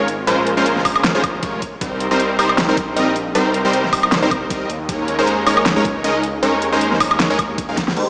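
Heard through a lush digital hall and then played back over a big sound system in a bare stone room with a small-speaker tone, this euphoric future bass drop at 156 BPM in a swung half-time feel puts an up-front, punchy supersaw stab riff, coloured by cassette tape, a low-pass filter, dub echo and sidechain pumping, over a thick, chorused detuned saw bass that also pumps, while an overdriven pop kit with a fat snare, warm hats, crash and woodblock and a knocking electronic kick carry it through Bbm9, Cm7 and Eb7sus4 to a drum fill at 7.8 seconds.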